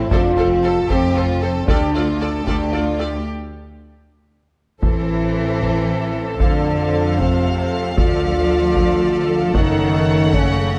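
Heroic and epic, this cinematic orchestral film cue in 6/8 opens with a lush, focused violin melody above a smooth second violin line, intense violas, cellos and distant double basses, while a dark, roomy French horn section holds sustained chords. Close, dry taiko drums struck with heavy sticks drive the music, and after a break at 3.3 seconds they play a fill that leads into the next passage. At 4.8 seconds a tight trombone section enters in the background with sustained chords, all set in a moderate recital hall reverb.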